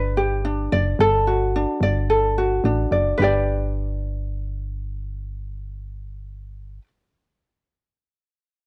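A homespun cassette recording made in a small room, with a light reverb and a soft halo of room ambience around the players. This short excerpt of acoustic pop feels easy-going and heartfelt, carried by a gently swung sixteenth-note groove in 4/4. Up front, a ukulele plays light, fingerpicked accompaniment with a warm acoustic tone and a cassette tape character, moving from G to D over G before settling back on G at 3.2 seconds. Beneath it, a solid FM bass sits low in the register with a punchy, round, digital attack that quickly decays into a mellow body. Both parts begin together at the start, and the excerpt breaks off as the ukulele ends at 6.9 seconds, just after the bass.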